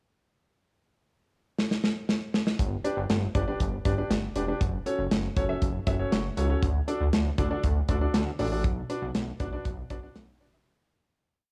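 This synth-pop piece has a bright, wistful mood and opens with a drum fill at 1.6 seconds that leads into a pre-chorus from 2.6 seconds. The modern studio drum kit plays a straight drum-machine beat of hi-hat, punchy kick and medium-tuned snare, sitting up front with an acoustic, studio-room character. A chorused synth bass enters at 2.6 seconds with a pulsing eighth-note line and slides. Its glossy, nasal blend of pulse wave and sawtooth is shaped by pulse-width modulation and a filter pluck. A natural-sounding baby grand piano adds off-beat triad chords above, with a brief fill near the middle, as the harmony moves from G through F#m and D to Bm. Light studio reverb lends a small-room ambience, and the piece fades out over its final seconds.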